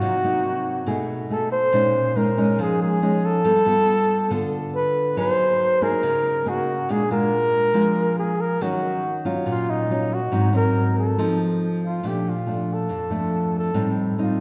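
Bossa nova at 140 BPM, sunny and sophisticated, in which a warm flugelhorn sings a jazz-style solo melody with light vibrato, a soft attack and scooped notes over an up-front, thumb-plucked nylon-string guitar with a fresh, classical tone, both carried by the lush, wet reverb of a church or concert hall as rich chords like Cm7b5, Gb69 and Ebm9 unfold before a new section arrives on Bbmaj7 at 12.0 seconds in this short cut from a longer piece.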